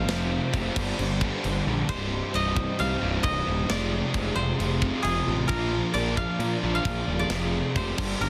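Dark and heavy, this short heavy metal clip moves at 133 BPM in 4/4 with a half-time feel, cut from a longer piece and tuned slightly below standard pitch. A woody, fingerpicked koto carries the melody between Ab4 and F5, its dry tone given a tape echo, while a dark high-gain lead guitar traces a second line in the background. Three guitars build the riff beneath: a bright, high-gain heavy guitar and a tight distorted guitar sit back in the mix, and a double-tracked, overdriven garage guitar lies very quiet underneath. Up front, a growly fuzz bass, picked and overdriven, anchors the low end down to C1, and a tight metal drum kit enters at 0.1 s with crash, a medium-tuned snare and a tight, softly clipped kick. The chords move through Fm, Gm and Cm, back to Fm and on to Bb before returning to Fm at 7.3 s, all set in light reverb within a dense, heavily limited modern master.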